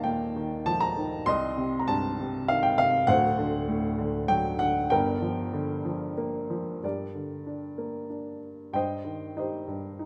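A moderate concert hall reverb, with a decay of 2.1 seconds, surrounds a single upright piano heard up front, its woody, smooth, vintage tone ending each note with a short sustain. This is a lyrical classical solo piece in G minor, moody and bittersweet, in 3/4 at around 96 BPM, though the beats are uneven and the rubato feel lets the pulse stretch and give. The piano alone carries the whole passage, from 0.0 to 10.1 seconds, spanning a range from D1 up to C6 and tuned slightly below standard pitch, to A4 = 439 Hz. The harmony opens on Ebsus2 and passes through Cm and D7 to Gm7. A new section begins at 6.8 seconds on Gm before settling onto Cm/G. The recording is cut from a longer piece.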